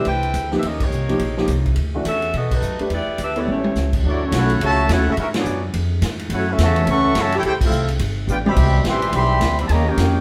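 This energetic, joyful big band swing excerpt opens with a clear saxophone section carrying the melody over a warm grand piano, a woody, growly upright bass and a swinging drum kit with a punchy kick, all moving at a brisk 212 BPM in D major with a swing feel. The saxophones sound tight and punchy, and the piano adds short-sustain accompaniment before it drops out at 3.5 seconds, with the saxophones following at 3.9 seconds. A drum fill at 3.5 seconds ushers in a smooth trombone section on a second line, and at 4.1 seconds a clear trumpet section with vibrato takes over the melody, reaching up high above the ensemble. Band accents punctuate the passage, and another drum fill at 8.3 seconds keeps the momentum rolling through colorful, shifting jazz harmony. The band plays live together in a moderately reverberant stone room, giving the performance a natural, lively sense of space as it breaks off mid-phrase.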